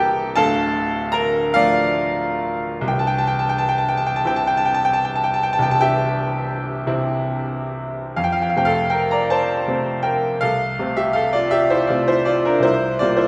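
A bright, brilliant grand piano, smooth and vintage in tone with long sustain and placed up front, plays a tender, nostalgic romantic nocturne in 12/8 at a slow, rubato 42-55 BPM, moving from D minor through C to a C7 at 8.1 seconds, spanning C1 to Bb5 and tuned to A4 = 439 Hz, all bathed in the wet reverb of a recital hall in this short excerpt cut from a longer piece.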